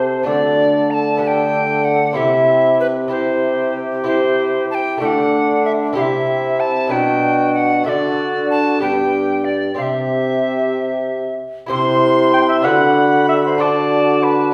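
A renaissance-style consort dance in the classical vein, this stately, courtly piece moves at a relaxed 63 BPM in a straight 6/8. An airy, wooden alto recorder carries the melody up front and close, its soft attack and gentle vibrato giving the tune a breathy grace. Beneath it, a dark cor anglais sings a second line from a more distant, roomy position, touched with light vibrato. A delicate lute, fingerpicked on gut double strings with some octave-doubled courses, joins a smooth-topped trombone in the accompaniment. A mellow, punchy bassoon anchors the bass. The harmony circles around D, G, C and B minor, and the ensemble sits in a reverberant recital-hall acoustic that lends the whole excerpt a ceremonial glow.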